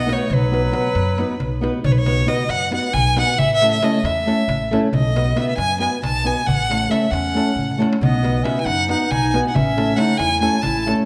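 A rich, smooth bowed violin sits up front with vibrato, carrying the melody through this wild, virtuosic Balkan wedding-band excerpt in 7/8 at 272 BPM (eighths), set in B mixolydian over chords alternating between B and A. A distant, roomy clarinet adds a classical-style second line at the start, drops out at 1.6 seconds and returns at 7.1 seconds, while a woody pizzicato upright bass and a dark, fingerpicked nylon-string guitar hold the lower and middle ground. A crisp, metal-shelled darbuka ticks in the background with a fill at 7.6 seconds, and a wet recital hall reverb surrounds the band.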